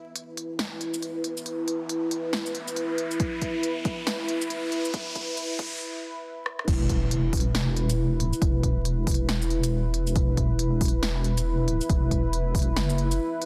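A deep, saturated wobble bass with a detuned, sine-and-triangle tone and chorus arrives up front at the drop at 6.7 seconds, giving this cavernous, heavy stretch of deep dubstep its dark weight. Before it, a moody sawtooth pad with a sub octave, slow attack and long release holds chords over a build-up, while an electronic riser climbs and a filter sweep moves across the sound, followed by a short break and a drum fill. The riser's impact lands with the drop. A deep house kit runs almost throughout, with a punchy snare, smooth hi-hats, rim click, shaker and crash cymbal in a swung, half-time feel, and a layered, punchy electronic kick enters at 3.2 seconds. The mix is dense and heavily limited, with light reverb, a high-pass filter and a bed of vinyl crackle, and the passage is cut from a longer piece.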